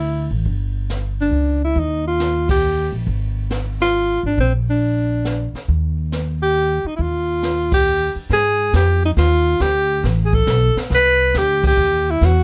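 A breathy alto saxophone carries the melody up front, its smooth top and vibrato giving this short swing-and-bop excerpt a sophisticated, warm character in Eb major. It moves at 138 BPM in a swung 3/4, with an upright bass played pizzicato beneath it, woody and growly on steel strings, sitting close and dark in the low register. A jazz brush drum kit joins at 0.5 seconds, heard at a distance in a small, roomy space, with dark cymbals, a high-tuned snare, a boomy kick and a rolled-off top end. The band hits accents together at 2.4, 7.6 and 11.6 seconds, and the harmony shifts from Eb and Bb toward Ab, Gadd9 and Csus2 in the closing stretch. A light reverb adds a touch of air to the intimate small-group sound.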